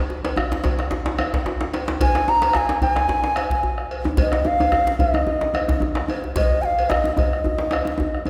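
West African traditional drum ensemble music, festive and driving, moves in 4/4 with a light swing on the sixteenths in this short excerpt cut from a longer piece. Two medium-tuned djembes carry the groove: one sounds close and dry, the other has a vintage, band-limited character with soft hands. Beneath them a deep, dark bombo comes across compressed and saturated, while a metallic cowbell sits distant, as if in a large room. At 2.0 seconds a bass bansuri enters up front with a pure, bamboo straight tone, soft attack and lifted highs, singing its melody between Eb5 and Bb5. The recording places the ensemble in a church or concert hall, its wet reverb lending a spacious ring to the whole performance.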